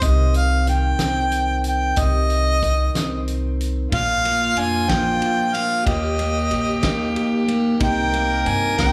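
Set in the moderate reverb of a church or concert hall, this hopeful, peaceful acoustic folk excerpt in a straight 6/8 opens with a distant harmonica solo with light vibrato over fingerpicked steel-string guitar with audible finger squeak, woody pizzicato upright bass and a loose, gritty drum kit with a fat snare, punchy kick and rolled-off top, before a nasal, reedy bowed fiddle enters at 3.9 seconds with a second line as the chords move from Cm through Bb and Eb to Cm7.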